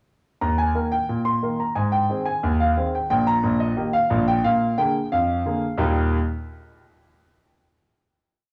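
Ragtime piano, cheerful and playful in a straight 2/4, with a clear, natural concert grand sitting up front, its single-line melody riding over a deep stride bass through a short phrase that lands on a closing chord at 5.8 seconds, all heard with a cassette tape character and small-room ambience of a home recording.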